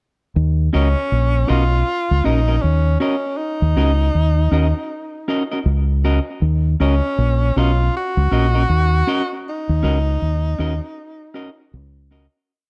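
A relaxed 79 BPM pulse in 4/4 with a swung sixteenth-note feel sets up this short, meditative roots reggae piece in Eb minor, resting on a single Ebm7 chord throughout. The fingered electric bass enters at 0.4 seconds and sits up front with a dark, round, punchy tone, carrying a deep melodic line broken by rests. A clean electric guitar plays a picked off-beat chop, its warm, clean sound dressed in spring reverb and tape echo. From 0.8 seconds a breathy tenor saxophone takes the lead with a clear, vibrato-laced pop-style solo built from short call phrases, touched by tape echo. The overall sound is dry and close, in the manner of a 1970s studio, and the whole piece fades out from 9.4 seconds to its close at 12.5 seconds.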